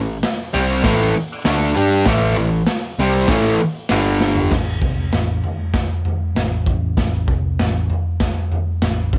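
Raw and rowdy, this garage rock clip cut from a longer piece opens with a bright, double-tracked fuzz guitar riff up front, moving from A5 to G5 over a round, dark picked electric bass with tube saturation and a punchy edge. A gritty, saturated drum kit enters at 0.2 seconds with a pumping small-room sound, dark cymbals and a rolled-off top, and drops a fill just before the guitar stops at 4.5 seconds. From there, bass and drums carry the Am section in a dry, cassette home recording.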